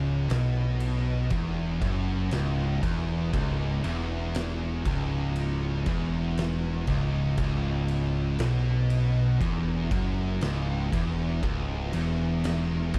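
Stoner and doom metal, sludgy and ominous, with an up-front, overdriven picked bass growling beneath a bright, double-tracked high-gain guitar and two fuzz guitars (one sitting in the background, the other very quiet and dark) all churning a low riff over a single minor chord, while an oversized low-tuned acoustic kit with a boomy kick, fat snare, dark crash and ride cymbals, and a pumping stone-room sound joins at 0.3 seconds in this dark, lightly reverberant cut from a longer piece.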